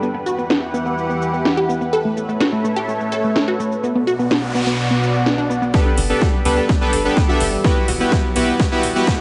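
A bright, thick unison pad with chorus, phaser and a touch of 12-bit sampler grit pumps against the sidechain at 126 BPM, opening this bittersweet, expansive progressive house excerpt alongside a detuned, wave-folded pluck arpeggio with delay and a house kit of cracking snare and metallic hats over chords moving from Emadd9 through Aadd9 and Bm. A noise sweep rises in the background from 4.1 seconds, and at 5.7 seconds a punchy, overdriven kick sits up front with smooth, detuned supersaw stabs as a drum fill drives the build-up. A tight, dark, saturated sequencer bass joins at 6.0 seconds under light reverb.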